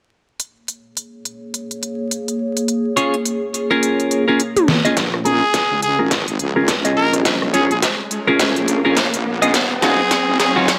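Glitch hop with a playful, gritty swing, this short excerpt opens on an up-front dubstep kit of deep snare, crisp hats, rim clicks and toms, joined at 1.4 s by a dark, nostalgic pad that warbles with chorus and pumps under the sidechain over Bbm7, shifting to Ebm9 near the end. A clean, picked electric guitar adds 12-bit-gritty stabs with delay from 3.0 s, and after a drum fill the build-up arrives at 5.0 s, bringing a punchy background kick, a heavy, saturated wobble bass, and a filter sweep on the guitar. A raspy, growling trumpet soloist with light vibrato takes the melody, an electronic riser climbs from 6.5 s, and vinyl crackle and a lush hall reverb frame the whole.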